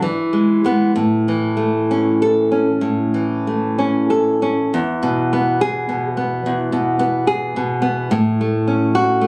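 Sunny and tender, this romantic piece for solo classical guitar unfolds with a free, rubato feel, its bright nylon strings fingerpicked up front and sounding freshly strung. The harmony settles into a new key center at 4.7 s and closes on F#m/A at 8.1 s. Captured on a phone in the room, the short excerpt carries light club reverb and compression.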